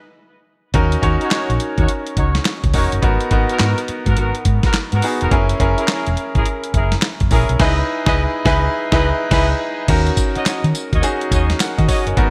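After a brief pause, a slick, confident new jack swing groove at 105 BPM kicks in at 0.7 seconds with a gritty, compressed sampler-style drum kit of thumpy kick, snare, handclaps, hi-hat, tambourine and crash, a round, punchy hollow-body electric bass and a brilliant, up-front concert grand piano with audible action noise over swung sixteenths and a chord progression starting on D#m7, while a mellow vintage horn section adds soft-attacked stabs with light vibrato and delay, and the band hits an accent from 7.6 seconds before a silent gap at 9.3 seconds, all in a bright 1980s-style digital sheen with light reverb.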